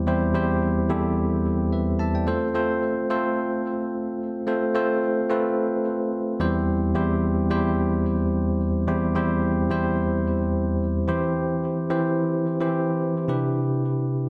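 Romantic and glossy, this short pop fragment, cut from a longer piece, features a tine electric piano playing alone throughout its 14.3 seconds. The piano's tone is bell-like, bright and clean, sitting direct and up front while a digital delay trails behind it. Set in 4/4 with a light swing on the sixteenths, the part ranges from E2 up to A5, moving from C/E to F and back to C/E before settling on Em7/C at 13.3 seconds. A wet scoring-stage reverb with a digital ambience surrounds the instrument, giving the overall production a dark, warm cast. The fragment passes through three brief sections, the last arriving with that final chord change.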